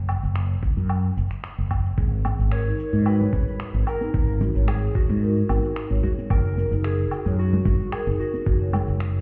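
Muffled as if heard through a wall and touched by stone-room reverb, this short cut of organic downtempo feels mystical and meditative, anchored from the start by a dark, round fretless electric bass with lush chorus, up front alongside a gritty, overdriven, thumpy electronic kick and sampled woodblock, shaker and finger snaps. At 2.0 seconds a mellow, airy marimba with soft mallets adds delayed arpeggios while hard-handed congas sit dry and close in the background, and from 2.5 seconds a slightly broken-up electric slide guitar carries the melody through tape echo. The harmony moves from an open, chordless start to G#7(no3) and then F#sus2.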